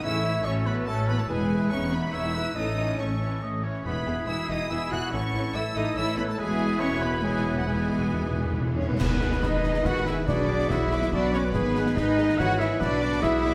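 Opening straight into a full orchestra, this triumphant, heroic film-score excerpt in E major at 142 BPM in 3/4 sets a lush, vibrato-rich violin melody over clear clarinet, hollow flute, oboe and second violins, with a distant viola accompaniment, soft French horn and trombone chords, punchy trumpet stabs and bowed cellos and double basses, as hard-mallet timpani enter at 3.9 s, a bright cymbal swell and bass drum build with a timpani fill toward a full band accent at 9.0 s, where snare, darker cymbals and bass drum drive a shift to G#m and Bm, all in a roomy scoring-stage reverb.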